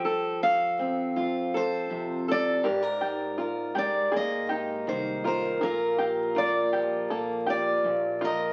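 Acoustic folk with a gentle, peaceful mood, cut from a longer piece, where a bright, picked steel-string guitar carries the melody up front over a second fingerpicked guitar whose fresh strings and audible finger squeak add crisp accompaniment, a woody pizzicato upright bass sits deep in the background, and an open-back banjo enters at 2.6 seconds with mellow, plunky arpeggios, all heard in a small room through the crackle of a very old 78 rpm record.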